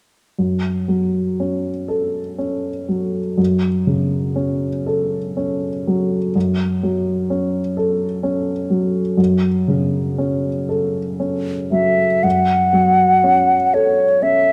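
A warm, present baby grand piano opens this elegiac, melancholic fragment of a romantic classical duo at 0.4 seconds, accompanying in triple metre with expressive rubato, and a mellow, hollow silver concert flute joins it up front at 11.7 seconds with a pure, tongued melody touched by vibrato, both instruments captured by close, detailed microphones within a moderate stage reverb before the music is cut off at 14.5 seconds.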